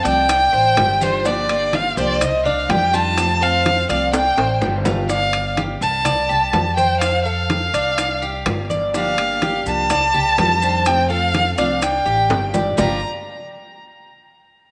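The recording sits in a moderate echo-chamber reverb that gives this sultry Cuban son and guajira excerpt a roomy bloom. At 125 BPM in 4/4 with a straight feel in G minor, a single bowed violin carries the melody up front, its warm tone shaped by vibrato, a gentle attack and expressive portamento, with tape echo on it and a distant quality. A picked Cuban tres plays arpeggios on metallic double strings, some doubled at the octave, while a pizzicato upright bass with gut strings lays down a dark, woody, thumpy low end. A fingerpicked dreadnought steel-string guitar with fresh strings accompanies quietly, dropping out at 5.1 seconds and returning at 8.9 seconds. Ringing metal-shell timbales sit close and dry, while round, low-tuned bongos played with hard hands, thick-skinned, deep-tuned congas under soft hands and grainy, mellow maracas stay in the background, and a drum fill leads into the second section.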